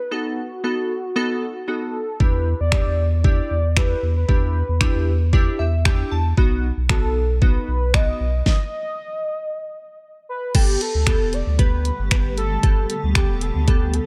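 Dance-pop with an upbeat, carefree mood, moving in a straight 4/4 feel in this short excerpt cut from a longer piece. A velvety, smooth synth lead carries the melody from the start, touched with chorus and vibrato, while glassy digital keys with a filter sweep and sidechain pumping play the accompaniment beneath it and take a fill at 5.3 seconds. At 2.2 seconds a thick, saturated sub bass and an up-front, electronic pop drum kit enter together, the kit layering a knocking kick, fat snare, hi-hat, finger snaps and crash cymbal, and the drums sit loudest in the mix. A stop interrupts the groove from 8.5 to 10.5 seconds, after which the harmony opens onto Gadd9 for the second section, moving on from the earlier B7, Em7 and B. At 11.5 seconds a cloudy, evolving granular pad joins on sustained chords, blurred and full-bodied with its own built-in reverb and sidechain pumping, while the overall recording stays dry and close.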